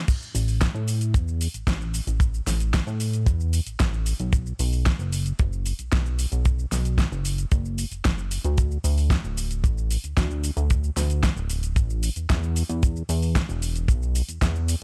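A straight groove drives this sensual, groovy nu-disco drop, built on a dry, tight acoustic kick up front and a layered electronic pop kit whose fat snare, hi-hat, shaker and crash carry a gritty overdriven edge from a small room, while from 0.3 s a glossy, retro chorused synth bass, mellow yet plucky with a fast attack and sustained tones, pumps against the sidechain in a close, nearly reverb-free mix.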